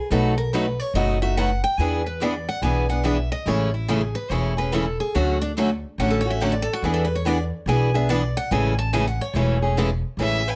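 Acoustic string swing in the jazz manouche style, this playful, lively piece in A major moves at 143 BPM with a swung feel. A bright, picked steel-string guitar plays a solo line from 0.0 to 10.2 seconds, while two more picked guitars, one boxy parlour instrument with fresh strings and audible finger squeak and one concert-sized, accompany through B7, E7, Amaj7 and Dmaj7 over a woody, thumpy pizzicato upright bass on gut strings. A rich, focused bowed violin with vibrato enters on the melody at 10.2 seconds, all within a light reverb.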